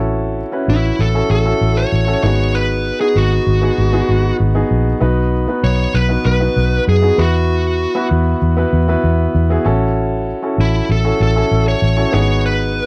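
A smooth, overdriven lead guitar carries the melody from 0.7 s, its dark, picked tone sitting up front in this romantic, uplifting 1980s-style pop piece at 97 BPM in straight 4/4. Beneath it, a round, foam-muted fingered electric bass and an intimate concert grand piano, with audible action noise and long sustain, move through A6, G#m7, B and Esus2. The dry, close 1970s-style studio sound keeps every part present in this short passage cut from a longer piece.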